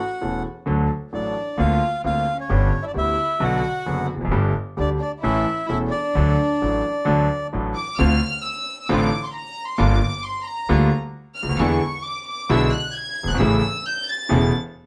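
A live band in one moderately reverberant studio room gives this nostalgic, passionate tango fragment a close, rounded sound that stays soft at the top. At 132 BPM in 4/4 with a rubato feel, it opens in D major, where a reedy, up-front bandoneon carries the melody until 7.5 seconds, joined by a floating, pure violin section playing sul tasto as a second line. Beneath them, a bright, polished concert grand supplies brilliant accompaniment with deep low notes, while an upright bass, plucked pizzicato on steel strings, adds a woody, dark foundation. At 8.0 seconds the music turns to D minor, and the violin section takes the solo over a Dm7, Gm7, E7 and A progression. A very quiet chamber string section enters at that point with light-vibrato stabs in a period-style, gut-string tone, and the group plays through to 14.5 seconds.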